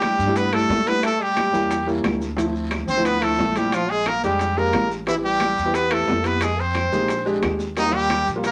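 Afro-Cuban jazz, lively and sunny, cut from a longer piece, with a brilliant, punchy trumpet up front carrying the melody with light vibrato and scooped notes while a clear, forceful trombone plays a second line beneath it. A warm, natural baby grand piano accompanies over rich extended chords, and a woody, thumpy pizzicato upright bass on gut strings enters at 0.2 seconds. Ringing metal-shell timbales sit in the background beside very quiet high-tuned congas, round low-tuned bongos, woody claves, a raspy guiro and grainy maracas, all set in a moderate studio reverb.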